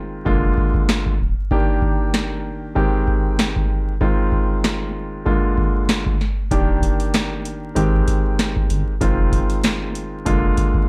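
A swung 96 BPM boom-bap groove from a booming analog drum machine, with a deep kick, crisp snare and metallic hats re-recorded in a large room and placed up front, drives this confident hip hop cut in Eb major, while a warm, filtered grand piano sits up front on seventh chords such as Ebmaj7, Abmaj7 and Fm7, and a round, deep sine sub bass in the background sounds briefly at 0.3 seconds and then returns at 6.5 seconds when the break ends, on a dry, gritty hardware recording dusted with vinyl crackle.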